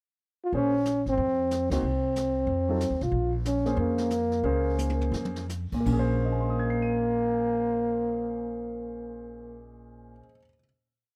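Cool and smoky, this brief, complete piece of small-group swing and bop opens on a trombone pickup, its mellow tone carrying light vibrato and scooped notes as it states a motif-based melody up front. A warm grand piano comps in syncopated drop-2 voicings with deep bass and long sustain, while a woody, thumpy upright bass plays a two-feel line on gut strings, and a brushed drum kit with dark cymbals and a boomy kick sweeps the snare until 6.0 seconds. After a band accent, the music slows from 3.1 seconds, a drum fill arrives at 4.8 seconds, and the group settles onto a held final chord in a dry, close studio sound.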